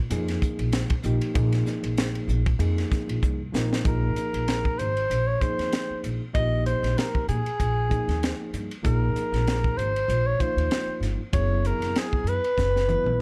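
Slick and driving, this electric jazz fusion excerpt moves at 96 BPM in 4/4 with a 16th-note swing feel. A woody pizzicato upright bass with steel strings sits up front from the very start, joined almost at once by a crisp, acoustic drum kit with a high-tuned snare, tight kick and pumping small-room sound. An overdriven reed electric piano played through a combo amp supplies gritty, reedy accompaniment colored by fast tremolo. After a drum fill from 3.2 to 3.9 seconds, a breathy soprano saxophone takes the solo melody at 3.9 seconds, whispered and intimate with subtone, light vibrato and a smooth top. The harmony moves from Bb5 to Bb9sus4 and then to Gb9sus4, and another drum fill closes the passage, all within a dark production touched by light reverb.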